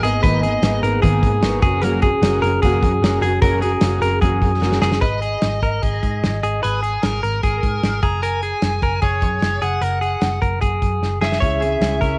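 A bright, twangy clean electric guitar sits up front, its compressed, picked arpeggios running through this restless, bittersweet jangly indie pop fragment, while a dark, foam-muted electric bass and a loose small-room drum kit with a tight kick hold a straight 4/4 groove. Early on, a full-bodied fingerpicked jumbo acoustic guitar and a buzzy, overdriven combo organ with light vibrato, tucked in the background, carry the accompaniment, and the organ adds a fill near the start. After a brief phrase at the very opening, a biting, overdriven lead guitar returns at 5.0 seconds to carry the melody, and the acoustic and organ return at 11.4 seconds as the harmony moves to C#m; most parts carry a cassette-tape tint within a reverb-touched home recording.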